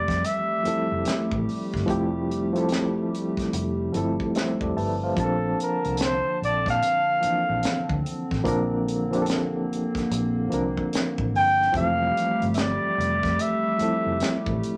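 A breathy flugelhorn carries the melody from the opening moment, sitting up front in a relaxed, soulful neo-soul groove with a swung sixteenth-note feel. Beneath it, a reedy electric piano with medium tremolo plays the accompaniment, while a hollow, flute-like pad holds mellow sustained chords softened by chorus. A dark, round fingered bass, foam-muted and punchy, anchors the low end, and a tight funk kit enters at 0.1 seconds with a high-tuned snare, hi-hat and compact kick in a natural small-room sound. The electric piano steps forward with a fill from 3.9 to 5.2 seconds, leading into the harmony's move from Fmaj9 to Bbmaj9 at 5.2 seconds, before the music returns to Fmaj9 at 11.7 seconds. Moderate studio reverb gives the R&B passage its space, and the music is cut from a longer piece.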